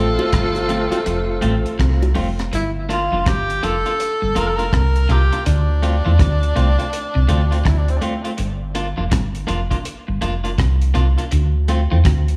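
A roomy tenor saxophone melody with light vibrato and tape echo sounds from the start of this meditative, laid-back roots reggae excerpt at 82 BPM in G dorian, alongside a punchy, distant horn section that drops out at 2.1 s, a clean, compressed picked electric guitar with its own echo, a dark, slightly broken-up guitar riff sitting in the background, a round, deep dub sub bass up front, very quiet low-tuned bongos that stop at 2.4 s, and a dry, dark drum kit with a tight kick and rim clicks, while the sax melody carries on until 8.0 s over a swung groove moving between Gm7 and Dm7 in light reverb.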